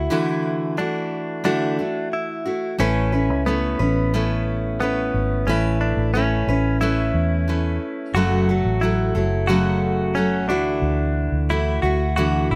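Close, detailed microphones and a dry room give this short pop excerpt an intimate, present sound. At 90 BPM in a straight 4/4 in A major, the mood is sunny and carefree. A full-bodied dreadnought acoustic guitar, picked and up front, carries the accompaniment, while a round, foam-muted vintage electric bass sits close beside it with a dark, amped tone. Quieter in the mix, a bright, twangy clean electric guitar, recorded direct and compressed, adds a picked second line in a narrow upper-middle range. All three parts play throughout, over chords that move from Dadd9 to Aadd9 at 2.8 seconds, then to F#m at 8.2 seconds and back to Dadd9 near the end.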